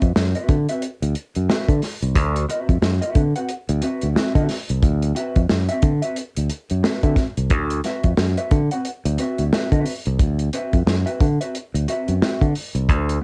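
A swung sixteenth-note funk groove at a relaxed pace sets a gritty, funky mood, with a growly, punchy fingered electric bass up front, a dark, smooth soul drum kit of hi-hat, tight kick and medium-tuned snare in a small, dry room, and a mellow, clean electric guitar comping on a D13 chord through phaser and cassette-tape coloring, all captured as a lo-fi home cassette recording in this 13.2-second excerpt from a longer piece.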